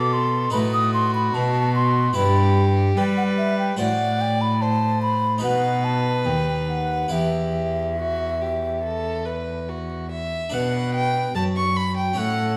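Grave and introspective, this excerpt from a baroque-style classical sonata movement with continuo moves in 4/4 with uneven beats, as an airy, woody baroque flute with expressive vibrato and a crisp attack carries the melody over a dark, gut-string violin second line, a dry, plucked Flemish-style harpsichord accompaniment, and a rich, reedy cello bass sitting up front, all set in a moderate recital-hall reverb beneath a layer of vinyl crackle.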